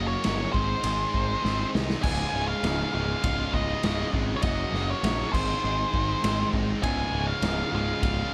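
A dark, fuzzed-out lead guitar carries the melody up front over a growly, overdriven picked bass, a raw garage drum kit with a punchy kick and rolled-off top that lands a fill at 1.4 seconds, and a pair of bright, tight distorted guitars riffing in the background, joined at 2.0 seconds by a very quiet, double-tracked overdriven guitar, giving this sunny, confident classic rock excerpt a small-room feel.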